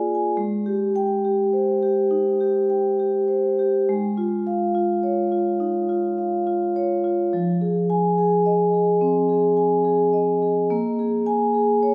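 A solo vibraphone, played with medium mallets and its motor off, rings out metallic and up front in this warm, flowing contemporary classical excerpt in Ab major, drifting at a rubato 70 BPM in 4/4 from Abmaj7 through Dbadd9/Ab and Fm7 to a Bb7 chord at 10.7 seconds, all within a wet recital-hall reverb.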